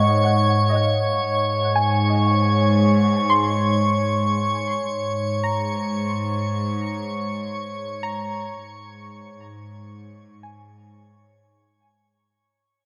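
A soft-bowed cello section holds a low Ab2 beneath this weightless ambient fragment, cut from a longer piece, its distant, floating ensemble tone set against a glassy texture of drifting overtones that sustains with a long release. A dark, round pluck plays gentle chorused arpeggios up high, trailing off into diffuse delay. The whole passage sits in a vast, echoing cathedral-like space and begins fading out from 2.4 seconds until it ends at 12.3.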